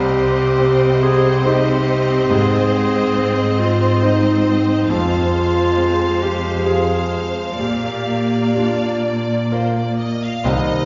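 Bittersweet and sorrowful, this cinematic film-score passage for orchestra unfolds in a rubato triple metre, cut from a longer piece. A lush, vibrato-rich violin section carries the melody, while a close-miked solo clarinet in classical style sings a clear second line until 9.5 s, shadowed by a softer, distant second violin section with gentle attacks. A smooth concert grand piano with deep bass, carrying a vintage tone, provides accompaniment alongside focused, background violas, and a bowed cello section anchors the bass. Underneath, the harmony moves from Cm to Ab, then Fm and Bb. A mellow French horn section adds sustained chords from 10.4 s, and a very quiet, even double bass section touches in at 10.5 s. The whole ensemble sits in a reverberant recital-hall space with a soft, rounded top end.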